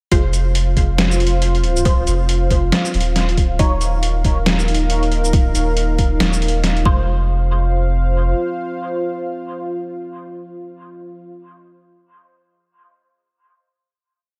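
Cavernous and meditative, this short deep dubstep piece rides a half-time, swung groove. An overdriven, knocking electronic kick and a gritty, pitched-down, sampler-style trip hop kit of closed hi-hat, shaker and snare sit under a round, up-front sub bass playing chopped phrases. A moody, detuned analog pad with chorus holds sustained chords while sparse, nasal, filtered chord stabs ring out through phaser and dub echo. The drums fall away near 7.0 seconds, and the sub bass lingers until about 8.3 seconds before the pad and stabs carry a final hit that closes at 10.6 seconds under light reverb.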